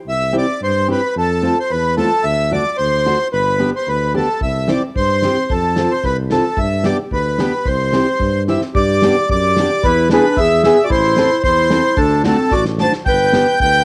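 A reedy, full accordion carries the melody up front over a mellow, close-miked tuba bass with light vibrato and a fingerpicked jumbo steel-string guitar with fresh strings, opening this festive, bouncy alpine dance-band excerpt in C major at 111 BPM in a rubato 2/4. A small-room acoustic drum kit with a tight kick, medium-tuned snare and rolled-off top joins at 4.4 seconds and adds fills, and a warm, classical-style clarinet enters at 8.5 seconds with a second line as the tune shifts into G major. The accordion, guitar, drums and clarinet carry a cassette-tape character, all within a home recording with light studio reverb.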